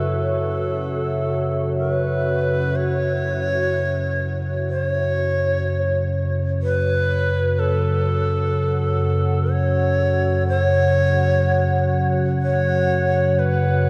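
A huge, wet reverb with a 7.2-second tail hangs over this dark, unsettling ambient drone, and the whole recording sounds worn, like old cassette tape with warbly pitch drift. It moves slowly at 62 BPM in 4/4 with a straight feel, resting on a single F# minor chord and tuned slightly low to A4 = 438 Hz. Up front, a deep, ominous, rumbling drone sits low between F#2 and C#3, its wave-folded tone swelling in with a slow attack and fading with a long release. Above it, a moody, detuned ambient pad holds sustained chords from F#4 to F#5, colored by chorus, a moving notch and its own reverb. For the first 2.8 seconds a barely audible, grainy, flickering granular texture shimmers underneath before it drops away. Also up front, an airy, reedy shakuhachi carries the melody between A4 and C#5 with a straight tone, soft attack and delay, its bamboo breath cutting through the murk until this short excerpt cuts off at 13.9 seconds.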